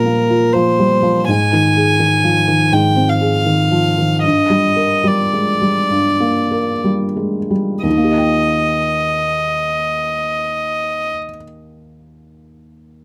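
Hopeful and tender, this neoclassical piano-and-strings passage in Eb major drifts in a rubato 4/4 between 59 and 84 BPM, slowing through its first 7.8 seconds as a single bowed violin, pure and floating with a sul tasto softness, carries the melody until 11.1 seconds over a felt-muted upright piano whose mellow, intimate accompaniment, its action noise audible up front, continues alone to 13.0 seconds, the two captured by close, detailed microphones in light reverb.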